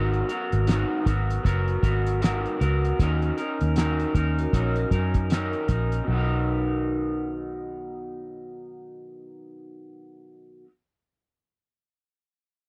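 This indie and bedroom pop excerpt drifts along at 78 BPM in 4/4 with a swung sixteenth feel, dreamy and sunny in B major. An electric guitar through a small old amp carries the accompaniment up front, bright, twangy and slightly broken-up, with a subtle chorus and a warbly pitch drift that give it a lo-fi charm. Beneath it, a vintage muted fingered electric bass sounds round and foam-muted. A cloth-damped, thuddy drum kit sits up front with a fat snare, a tight kick and hi-hat under a rolled-off top, and it drops away at 6.1 seconds. From 4.4 seconds a vibraphone with medium hard mallets and motor off adds a brief, ringing second line in the background, treated with subtle chorus and tape echo. The harmony moves from G#m9 to D#m7 and settles on Bmaj7, all captured in a dry, close 1970s-style studio sound with light reverb.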